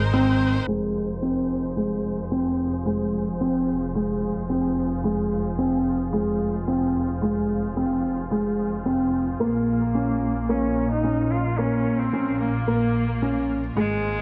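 Piano and strings electronica in F minor at 110 BPM, this intimate, moving fragment is cut from a longer piece and sits in a straight 4/4. A felt-muted upright piano carries the riff up front with a soft, thick-felt tone, its notes trailed by tape echo. Beneath it, a muted double bass section bows a dark, veiled bass line con sordino, while a clear chamber string section holds sustained chords with a smooth top and intense vibrato. At 9.4 seconds a bright cello takes up the melody, a single player whose biting, bowed tone sounds distant yet stands up front, as the harmony moves from Fm to Bbm. A filter sweep runs from 0.7 seconds to the close, and the whole is set in a moderate scoring-stage reverb with small room ambience and a low-pass filter.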